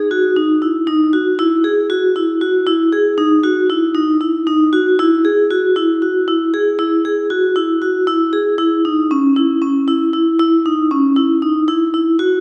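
A metallic, ringing vibraphone struck with medium mallets plays alone and up front from 0.0 to 12.4 seconds, its fast motor vibrato shimmering through the wet reverb of a church or concert hall in this brooding, tense progressive instrumental fragment in C# minor and 7/8 at 233 BPM in eighths, tuned to A4 = 438 Hz, with the melody staying between C#4 and G#4 and moving into a new section at 8.6 seconds.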